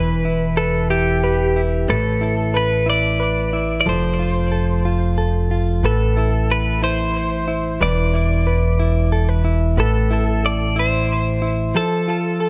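A bright, twangy twelve-string electric guitar carries the melody of this dramatic, melancholic pop ballad in A minor, its picked, compressed lines set up front and trailed by tape echo. Beneath it, a clean electric guitar recorded direct supplies warm, picked accompaniment, also compressed and close in the mix. An upright bass played pizzicato on steel strings adds a woody, dark low end, sitting slightly louder than the guitars and dropping out at 11.7 seconds while the guitars continue to 12.5 seconds. The piece moves slowly in 6/8 at 61 BPM with a straight feel, cycling through chords such as Em, Asus2, F, Amadd9 and E5. Light reverb and an echo-heavy mix give this brief cut from a longer piece a spacious, dramatic atmosphere.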